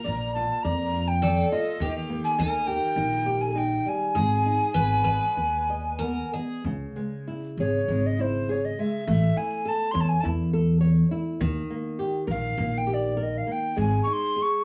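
Heard through worn, warbling cassette tape with a warbly pitch drift and light reverb, this passage from a longer fado-style ballad moves at a rubato 101 BPM in 4/4, its longing, passionate mood rooted in G# harmonic minor before shifting to C# harmonic minor at 6.7 s. A breathy, mellow alto recorder with vibrato and a soft attack carries the melody up front, while a shimmering, octave-doubled twelve-string acoustic guitar picks a second line that stops at 6.6 s. Beneath them, a fingerpicked flamenco guitar with audible finger squeak supplies the accompaniment and a woody, bright pizzicato upright bass anchors the low end.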